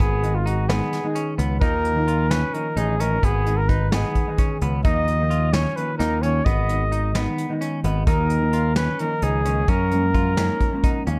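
Progressive instrumental band music in 7/8 at 260 BPM counted in eighths, this brief excerpt in G# dorian feels brooding and tense, circling between G#m and D#sus2 before landing on F#maj7 near its close. An up-front flugelhorn carries the melody with a mellow, close-miked tone and light vibrato, sounding like a jazz soloist. Beneath it, a picked electric bass sits forward in the mix with a round, direct sound, while a soft brush kit of hi-hat, tight kick and medium-tuned snare gives a natural studio-room feel. A bright, clean semi-hollow electric guitar plays picked arpeggios, and a dark, fingered hollow-body jazz guitar, double-tracked and set in the background, enters at 0.2 seconds with accompaniment and adds fills at 7.4 and 10.6 seconds. Light reverb and a dusky overall production keep the ensemble close and shadowy.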